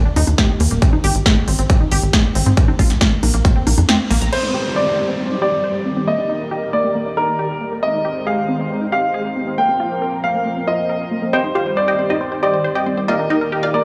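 Driving and soaring, this uplifting trance passage in C minor moves at 137 BPM in a straight 4/4, cut from a longer piece. A lush, detuned unison pluck spins arpeggios throughout, pumping against the sidechain and trailing dub echo, while a tight, nasal sequencer bass and a punchy electronic kick sit up front with a big-room dance kit of crisp hats, snare, congas and crash. The kick drops out at 3.9 s on a band accent, and at 4.3 s the bass and kit fall away as a warm grand piano enters with a present, long-sustaining second line carrying dub echo. Beneath it a filtered supersaw swell holds evolving, phased chords, with a filter sweep running on both the supersaw and the pluck, while an electronic downlifter passes through the opening seconds of this stretch. From 11.3 s a second unison pluck takes up the melody over chords moving from Cm to Ebmaj7, all set in a light small-room reverb.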